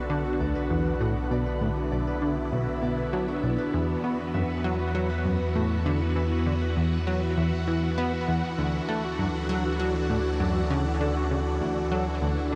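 Expansive and mysterious, this 99 BPM ambient, sequencer-driven space music excerpt pairs swirling, phased string-machine chords and fingerpicked, ringing concert harp arpeggios with delay against a round sine sub bass and a punchy, ring-modulated analog bass riff echoing through delay, all moving from Bm to Esus2 at 3.7 seconds and Dadd9 at 8.6 seconds, bathed in shimmer reverb and cassette-tape grain.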